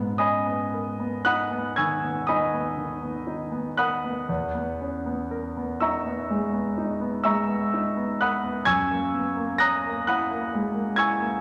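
A slow, rubato 9/8 pulse of roughly 37-45 BPM in dotted quarters carries this mysterious, hazy impressionist solo piano passage in G# minor, cut from a longer piece, where a polished, up-front grand piano spans E2 to A#6 through G#madd9, Emaj7#11 and F#9 harmonies, bathed in a wet scoring-stage reverb with a 1.7 s tail.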